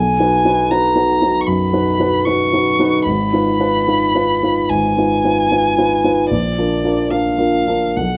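This is a classical romantic duo for violin and grand piano, a brief 8.2-second excerpt cut from a longer piece, with a yearning, solemn mood. It moves in 4/4 at a slow, flexible 67-78 BPM, played with rubato and tuned to A4 = 441 Hz. The bowed solo violin carries the melody throughout, its rich, expressive tone coloured by vibrato and portamento as it sings between D5 and Db6. Beneath it, the grand piano supplies a smooth, vintage-tinged accompaniment, sounding slightly louder than the violin and reaching down to a deep Ab1. The harmony passes from B to Fm7b5/Ab at 3.1 seconds and settles on Bb at 6.3 seconds. Both instruments sit up front in a dry, intimate sound captured by close, detailed microphones.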